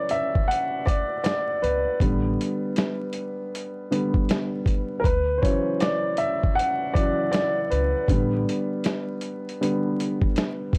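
An intimate upright piano opens this cosy, mellow lo-fi hip hop excerpt in D major at 79 BPM, its audible action noise and long sustain softened by cassette tape and a low-pass filter as it solos across all 10.8 seconds over Dmaj7 and A9sus4 chords, the first A9sus4 voiced rootless. A compressed, sampler-style drum kit with a thumpy kick, medium-tuned snare and hi-hat sits up front with a gritty, swung 16th-note feel. A dark, woody pizzicato upright bass with transformer saturation joins at 1.6 seconds and drops out at 8.4, all within a small, dry room framed by vinyl crackle.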